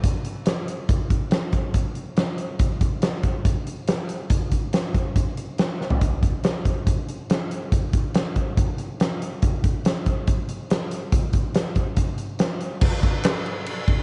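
Rock drums carry this brooding, gritty excerpt, a big acoustic kit set up front in a large room, with a punchy kick, a fat snare, bright cymbals and a dark, smooth body across crash, hi-hat and toms. A drum fill arrives at 5.8 seconds, and after a new section begins at 12.8 seconds, a very quiet, crisp group handclap sounds briefly at 13.2 seconds. The sound carries light reverb and a rounded top end.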